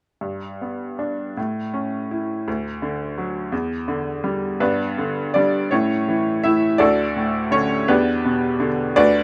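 Flowing in a rubato 6/8 at about 55 beats per minute, counted in dotted quarters, this lyrical classical passage for solo piano drifts with a peaceful, tender calm. An upright piano carries everything alone from 0.2 to 9.2 seconds, ranging from D2 up to E5, with a brilliant, woody tone that sounds worn and slightly detuned. Sitting present and up front, it is framed by moderate studio ambience. The music rests in G lydian and moves through a gentle cycle of G, A, D and Em7, which begins again at 4.6 seconds as a second section opens. Cut from a longer piece, it feels like an intimate, unhurried moment overheard at the keyboard.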